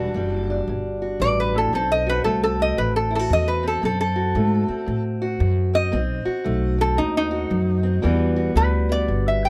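A swung 4/4 lilt at 114 BPM carries this soulful, brooding acoustic country blues excerpt, where a metallic, nasal lap resonator guitar played with a steel bar and fingerpicks takes a slide solo over a dark, boxy parlour steel-string guitar fingerpicked on old strings and a thumpy gut-string upright bass played pizzicato, all three up front in light reverb as the harmony moves from Em9 to B7b9 at 1.7 seconds and back to Em9 at 8.0 seconds.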